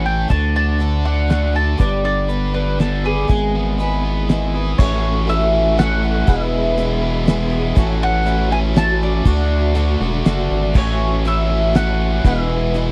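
A straight 3/4 pulse at 120 BPM drives this hopeful folk rock and heartland rock passage, cut from a longer piece. A cloth-damped, thuddy drum kit enters at 0.3 s and sits up front, with a fat snare, tight kick and dark cymbals. Beneath it, a gritty, saturated synth bass pushes low and aggressive. A picked twelve-string acoustic guitar supplies boxy, shimmering accompaniment with a subtle chorus. A biting, double-tracked overdriven guitar plays a riff, and a round mandolin carries the melody on top. From 4.8 s the music settles into A major, and a soft, flute-like tonewheel organ joins in the background with sustained chords through chorus vibrato and a fast rotary speaker, as the harmony moves among A6, E and D. The sound is dry and close, in the manner of a 1970s studio.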